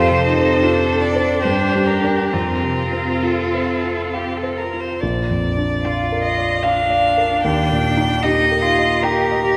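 In a rubato 3/4 lilt, this serene classical piece for piano quartet, cut from a longer slow romantic movement, sets an up-front solo violin melody with light vibrato and a smooth top over a second violin's expressive portamento and a cello's even, distant second line, all three bowed and rich, while a warm concert grand with deep bass and short sustain plays the accompaniment, the whole quartet bathed in a church's wet, lingering reverb.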